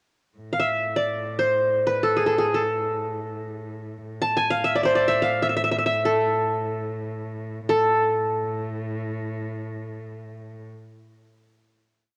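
Unmeasured and in free time, this short, complete piece for a small Arabic maqam ensemble carries a longing, melancholic mood. A bowed cello holds a low drone from 0.4 seconds, its tone rich and smooth with vibrato, sitting well back beneath the melody. The qanun enters at 0.5 seconds and stays up front, its fingerpicked triple strings giving a bright-edged, acoustic sparkle as it spins an ornamented modal line. Around 7.7 seconds the free-time passage gives way to a final held note that carries the piece to its close. Light studio reverb surrounds the pair, and the cassette home recording lends both instruments a worn character.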